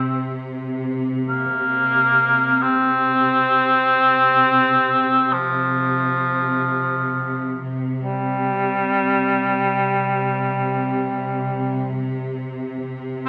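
This Caucasian folk excerpt is mournful and solemn, cut from a longer piece. A mellow cor anglais carries the melody throughout its 13.3 seconds, playing in a classical style with light vibrato in a range from F3 to C4. Beneath it, a bright studio string section holds a bowed drone on C3, lush and intense with its own vibrato, sitting quieter than the solo line. The cor anglais has a roomy, distant quality while still sitting up front. A wet recital hall reverb with a 1.7-second decay gives the whole passage a spacious, reverent air.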